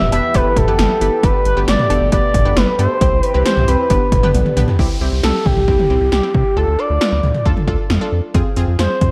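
Over a straight 4/4 groove of up-front, overdriven 80s electronic drums with a punchy kick, gated snare and toms, metallic hats and cowbell, this bright yet wistful synth-pop excerpt pairs a smooth, expressive sawtooth lead with vibrato, portamento and slapback echo against a round, deep analog bass, a warbling, detuned analog pluck, and a swirling, nasal phased pad in the background that drops out at 4.8 seconds, just after a drum fill, when a soft electronic downlifter enters, all set in a dark production with moderate digital room reverb.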